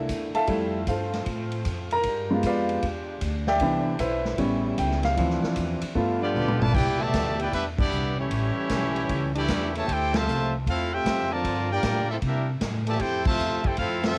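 Swinging in 4/4 at 153 BPM in C major, this joyful big band jazz clip opens with an intimate, up-front baby grand piano solo with audible action noise, backed by background saxophone section chords with vibrato, a woody, growly pizzicato upright bass and a punchy, big-room drum kit with cassette-tape coloring. At 6.2 seconds a brilliant, lightly vibrato trumpet section melody enters, also tape-colored, over a tight, close-miked trombone section second line, just before a drum fill at 6.4 seconds closes out the piano solo. Band accents land at 7.7, 10.1 and 13.2 seconds, all in light reverb and a homemade cassette sound.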